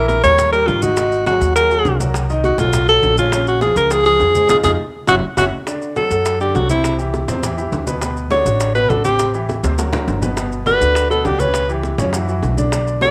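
Afro-Cuban jazz at a brisk 204 BPM in 4/4, this fiery, sophisticated passage is cut from a longer piece and runs about 13 seconds. A clear alto saxophone carries the melody up front, its tone marked by vibrato, subtone and scooped notes and touched with a slapback echo, moving into a solo at 5.7 seconds. A vintage-sounding concert grand piano supplies smooth accompaniment with deep bass, while a woody, thumpy upright bass with gut strings is plucked beneath it. Tight, high-tuned bongos sit in the background, low-tuned congas with a thick skin sound distant and very quiet, and grainy, mellow maracas stay close and dry. A drum fill and band accent at 4.5 seconds push into the second section, where the harmony moves through chords like D7, Daug and Gmaj7#11, all in a small room with light reverb.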